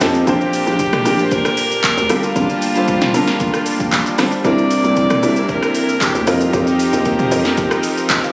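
Heard as if through a phone set in the room, with a light studio reverb, this excerpt carries a soulful, hypnotic amapiano groove in a straight four. A breathy, whispered alto saxophone takes the melody from 0.3 s, its clear pop-style tone trailed by digital delay. Beneath it, an intimate grand piano with audible action noise plays the accompaniment through Bb6, Gm9, C9 and F9sus4 chords. A hollow, bouncy log drum bass with a fast attack and decaying notes anchors the low end, while the overdriven, layered deep house drum kit sits up front with a deep kick, punchy snare, metallic hats, handclaps, rim clicks, shaker and toms. A lush, detuned sawtooth pad hangs in the background with chorus and sidechain pumping, and from 4.4 s a very quiet, band-limited marimba adds vintage-toned stabs.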